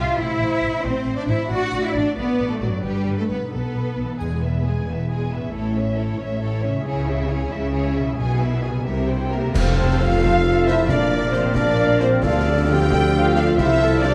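A dark, moderately reverberant scoring-stage sound frames this heroic, triumphant fragment of adventure film score, cut from a longer piece and moving in a lilting 6/8. Lush strings carry it from the start: a rich violin section sings the vibrato-laden melody over a focused, close second violin line, while violas fill in smoothly in the background and bowed cellos and woody double basses anchor the bass, with a ringing concert harp picking arpeggios underneath. At 4.2 seconds the harmony shifts to E major, marked by a brief, round timpani figure and a burst of percussion from triangle, cymbal swell, dark clash cymbals and concert bass drum, heard close and dry. From 9.3 seconds the orchestra broadens, as a distant, roomy French horn section sustains mellow chords and a very quiet, airy flute joins, soon followed by a clarinet, a vintage-toned oboe, a mellow tuba in the bass and concert snare drum with bright cymbals and bass drum. 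A full-band accent at 9.6 seconds launches the final section in F major.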